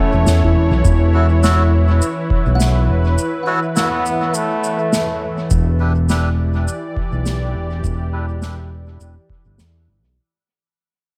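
A lightly reverberant small-room recording of hazy, spacious ambient dub at 103 BPM in E dorian, cut from a longer piece, where a round, overdriven bass sits up front beneath a deep analog kick, a fat snare and shaker with dub echo, a smooth detuned pad with chorus and tremolo, a woody kalimba with tape echo in the background, a bright trombone melody with vibrato and dub echo that stops at 5.2 s, and reedy, breathy melodica stabs whose low-pass filter sweeps through the fade-out from 5.5 s.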